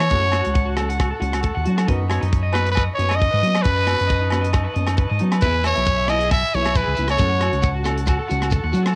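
A lightly swung 16th-note groove in 4/4 drives this joyful, sunny highlife guitar band, carried by a tight funk drum kit with hi-hat, kick drum and rim click and a round, punchy fingered electric bass placed up front. Over it, a growling trumpet takes the solo melody, its raspy, brilliant tone marked by light vibrato and sitting present at the top of the mix. An electric guitar at the edge of break-up spins twangy, picked arpeggios through tape echo, while a small, thumb-plucked nylon-string guitar with audible finger squeak and a buzzy, overdriven combo organ holding sustained chords sit in the background. Ringing agogo bells add a vintage, band-limited shimmer, and a grainy, very quiet shekere joins at 5.4 s. The home cassette recording is dry, with a rolled-off top on the drums, and the passage is cut from a longer piece.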